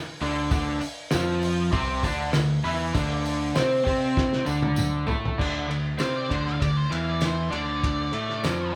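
Garage rock in D minor at 98 BPM, raw and swaggering, with a crunchy, double-tracked overdriven guitar riff up front over a growling picked bass and a cloth-damped, thuddy drum kit with a fat snare and dark, muffled cymbals, while a jingly tambourine sits distant in the background. A drum fill runs from 4.2 to 5.4 seconds into a new section, and at 6.0 seconds a dark octave-fuzz lead guitar enters with a short picked melody. The band sounds like it is playing live in one room with light reverb, in a cut from a longer piece.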